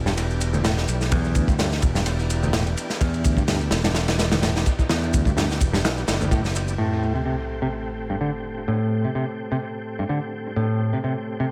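This funky, energetic breakbeat excerpt opens on smooth tonewheel organ chords with chorus vibrato, fast rotary speaker and sidechain pumping over a growly fingered bass, joined at once by a bright, amped picked-bass riff steeped in low-pass filtering and tape echo, a crunchy, saturated drum kit with dark cymbals and a tight kick up front, and a tape-warm shaker in the background, until the drums, shaker and fingered bass fall away around 6.8 seconds as a sub drop hits and the organ and picked bass carry on in an echo-heavy, lightly reverberant mix.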